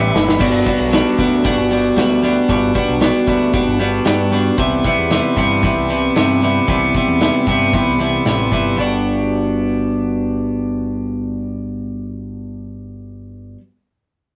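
Carefree and upbeat, this indie rock excerpt moves in a straight 4/4 feel, cut from a longer piece. A bright, twangy twelve-string electric guitar sits up front, playing a clean, compressed, picked riff over chords that shift from Gmaj7 to Cmaj7 and back to Gmaj7 at 8.8 seconds. Beneath it, a growling picked electric bass adds a dark, round, overdriven low end. A loose acoustic drum kit, with a punchy kick, medium-tuned snare, hi-hat and dark crash cymbals in a pumping room with a rolled-off top, keeps time until it drops out at 8.6 seconds, leaving guitar and bass to carry the final stretch. The whole mix has the rough, saturated character of a rehearsal-room recording, set in moderate studio reverb.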